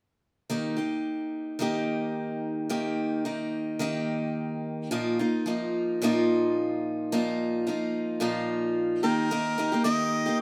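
Easy-going and sunny, this short pop excerpt moves at 109 BPM in 4/4 with a light sixteenth-note swing, set in Eb major. A picked steel-string acoustic guitar carries the accompaniment from the start, its bright parlour tone sitting up front with an audible finger squeak. The harmony rests on Eb, moves to Bbsus4 at 4.9 seconds, and returns to Eb at 9.0 seconds, where a clear, pop-style harmonica enters as the solo melody voice, also placed up front. The pair sounds like a band playing live together in one room, wrapped in a moderate stone-room reverb that lends an airy, natural space. The fragment is cut from a longer piece and breaks off just as the harmonica's new section gets under way.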